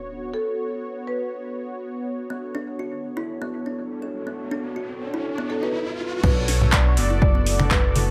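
A lightly swung 4/4 afro house groove holds back its beat until a drop at 6.2 seconds, when a punchy, layered electronic kick, a smooth sawtooth synth bass and bright, compressed congas tucked in the background all arrive together. A deep house drum kit also enters there, with metallic, overdriven hi-hats, crash cymbal, finger snaps and handclaps. Before that, the passage builds over a Bm7 chord. A mellow analog pad holds sustained, detuned chords with a soft attack and chorus. A dark, brassy synth stab sound with a filter sweep runs throughout. A sub drop and riser supply electronic effects through the build. A round, woody marimba played with soft mallets carries the melody through analog delay, then gives way to short, dry kalimba arpeggios with a hollow-box pluck from 2.3 seconds, before the marimba returns at 5.5 seconds. Sidechain pumping moves the pad, brass, kalimba and bass, and the echo-heavy mix with light reverb gives this earthy, driving fragment of a longer piece its spacious digital ambience.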